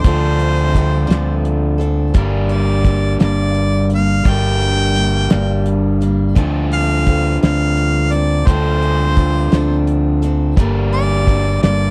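Reflective and wistful, this folk rock and heartland rock excerpt moves at a slow 57 BPM in a straight 6/8 feel in D minor, drifting between Dm7 and Gm. A clear harmonica with light vibrato carries the melody over a picked steel-string acoustic guitar with audible finger squeak and a crunchy, double-tracked overdriven electric guitar riff. A round, up-front fingered bass and a damped 70s drum kit with a fat snare, tight kick and rolled-off top anchor the sound in a dry, close 1970s-style studio recording.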